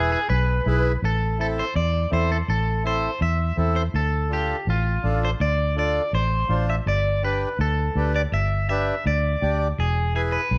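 Latin cumbia in A minor at 164 BPM, passionate and driving, where a twangy, slightly broken-up electric guitar with spring reverb carries the melody up front, opening with a clean solo turn in the first 1.0 seconds, over a reedy, band-limited vintage accordion and a dark, round, foam-muted fingered electric bass that punches up front, moving through Am, Dm, G and E under a light reverb.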